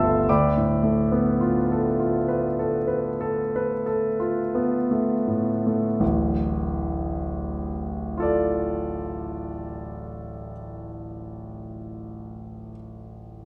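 Impressionist solo piano in D minor with a hazy, nocturnal mood: a clear, up-front concert grand with deep bass and long sustain drifts in 9/8 at a slow, rubato 26-38 BPM, easing down over its opening phrase, with the harmony moving from a Dm6 colour onto a plain Dm chord as the second section begins at 6.0 seconds, all bathed in a lingering recital hall reverb, in this short passage cut from a longer piece.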